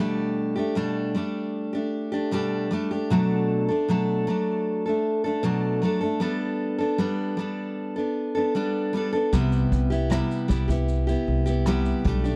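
A straight, unhurried 4/4 at 77 BPM carries this easy-going, heartfelt acoustic pop fragment in G major. A full-bodied, up-front picked steel-string acoustic guitar with old strings plays alone through the chords Gadd9/B, Bm7 and Gadd9. At 9.3 seconds, a growly, woody pizzicato upright bass and a natural-sounding jazz brush kit with a boomy kick, rim click and shaker join on Cmaj7, all within a dry, close 1970s-style studio sound touched by light reverb.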